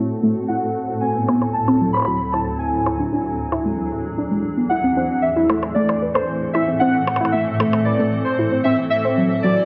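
A blurred, evolving granular cloud pad opens this cerebral, melancholic IDM excerpt at 114 BPM in A melodic minor, soon joined by a dusty, detuned sawtooth pluck playing arpeggios through chorus, delay and a filter sweep, a nostalgic, wave-folded lo-fi synth keys melody up front, and electronic percussion blips from 1.3 to 7.8 s, all set in a moderate digital echo-chamber ambience as the chords move from D9 through E7 and Am to D13.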